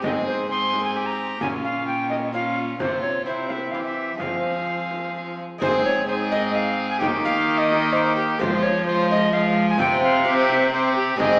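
An airy alto recorder carries the melody up front, its wooden tone marked by a clear chiff on tongued notes and a touch of vibrato. This is a courtly, solemn renaissance-style consort dance in F minor, moving in a straight 3/4 at 129 BPM, and the recording is cut from a longer piece. Beneath it a single violin plays a second line with a gut-string, period-style sound, while one viola, close and nasal with an airy bow, fills in the accompaniment. One rich cello bowed in the same period manner holds the bass, and a delicate fingerpicked lute with bright double strings sits further back. A deep frame drum sounds distant in the background, and the ensemble plays throughout the 11.4 seconds, with a phrase repeating from 5.6 seconds over chords such as Ab, Bbm, Fm and Eb, closing on a bare C5. The reverberant recital-hall space gives the consort a church-like echo, though the overall sound comes across as if heard through a small speaker.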